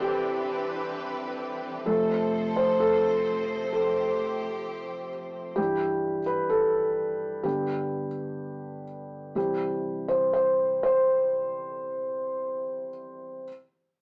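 A felt-muted upright piano opens this tender, hopeful pop excerpt in C major at a slow 56-65 BPM, its dark, intimate tone sitting up front with audible action noise, while a lush, bowed studio string section holds smooth, vibrato-touched chords beneath it over Cadd9 and F. The strings stop at 5.6 seconds, leaving the mellow piano alone through G69 and G as it slows down toward a C chord, ending at 13.5 seconds. Light reverb and a rough rehearsal-room sound with saturation and a small-speaker character frame the whole recording.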